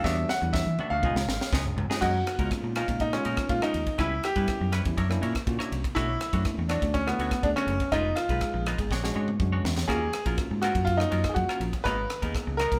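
Electric jazz fusion at 122 BPM in 4/4 with a straight feel, in F# major, this short cut from a longer piece has a soaring, slick mood. A bright baby grand piano carries the melody up front with a brilliant, long-sustaining tone, while a bell-like tine electric piano sits clean in the background as accompaniment. A semi-hollow electric guitar adds picked, compressed stabs, and a fingered electric bass holds the low end with a direct, amped sound. The crisp fusion drum kit is airy and polished, with a high-tuned snare, punchy kick, ride, crash, rim clicks and toms, opening with a fill from 0.0 to 2.0 seconds and adding another at 8.9 seconds. Entering at 0.4 seconds, a very quiet granular cloud pad drifts underneath with blurred, detuned, evolving chords through a phaser, as the harmony moves through rich extended chords such as F#69, A#7alt and D#m9, all heard as a band playing together in one room with moderate studio reverb.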